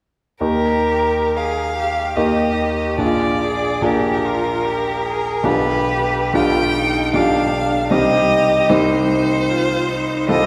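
A rich, focused solo violin carries the lyrical melody with vibrato, sitting up front in this serene slow romantic movement for piano trio, cut from a longer piece. A bowed solo cello with vibrato adds a second line beneath it, and a grand piano supplies the accompaniment, its intimate, natural tone carrying audible action noise close to the listener. All three play together from 0.4 to 10.5 seconds at a relaxed 62-78 BPM in 3/4, with a rubato feel. The harmony in Eb major moves through Eb, Bb7, G7/B and Cm. A wet church reverb with a 2.6-second decay surrounds the trio, placing it in a resonant church or concert hall.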